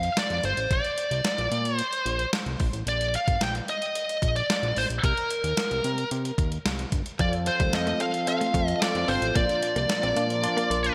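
Bright 1980s-style digital production with plate reverb frames this moody, dramatic pop excerpt at 111 BPM, where a distorted, high-gain lead guitar with delay carries the melody up front over a fat, detuned analog bass and a thumpy 12-bit drum machine with gated reverb, until at 7.2 seconds a clean tine electric piano with phaser enters alongside a brassy, soft-attack pad with chorus and a compressed, clean direct guitar riff with lush chorus tucked in the background, the piano adding a fill at 10.4 seconds.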